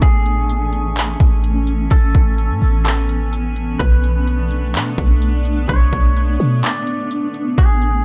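A half-time trap groove at 127 BPM in 4/4 drives this blissful, dreamy cloud-rap excerpt, with an electronic kit of handclaps, crisp hi-hat and hard-clipped kick up front beside a deep, boomy sine 808 bass with a fast attack. Over Amaj7 moving to Bm9 at 3.8 seconds, a blurred, detuned granular pad with sidechain pumping and built-in reverb sustains the chords. A twangy, compressed clean electric guitar carries the melody through tape echo, a faint glassy texture of drifting overtones washed in chorus hovers in the background, and the dark, dry mix opens into a break at 6.6 seconds.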